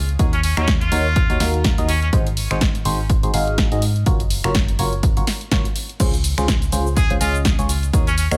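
Swung sixteenths drive this joyful, euphoric piano house cut in 4/4, taken from a longer piece, with a punchy, layered electronic kick and a house kit of snare, hats, finger snaps, cabasa and crash cymbal, both carrying studio reverb and a tape-warm finish. Beneath them, a round, dark FM bass with a fast attack sits on tube saturation and pumps against the sidechain. A barking FM electric piano plays the riff, biting and percussive with a noise layer, colored by phaser and digital delay and also pumping. A nasal, brilliant trumpet with a straight mute sings the melody with vibrato from 0.3 to 2.1 seconds and returns at 7.0 seconds, sounding distant and roomy through its own delay. The harmony moves from Ebm7 to Ab7, then Gbmaj7 and Dbmaj7, all wrapped in a digital ambience.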